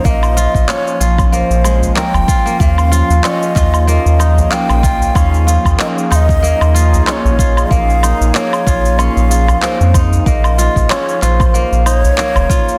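Organic downtempo at 94 BPM in Bb minor with a lightly swung 16th feel and a warm, mystical mood, this excerpt pairs a breathy, end-blown low ney melody carrying vibrato with a crisp, fingerpicked kora ringing out arpeggios, both trailing delay and shimmer reverb, over a detuned sawtooth analog pad whose smooth sustained chords pulse with chorus, tremolo and sidechain pumping, a dark, round analog bass sitting up front with tube saturation, a deep electronic kick, electronic shaker, woodblock and handclaps re-recorded in a large room, and an acoustic udu joining in the background at 1.8 s, as the harmony moves from Bbmadd9 to Ebsus4 and back to Bbm in a dense, heavily limited master.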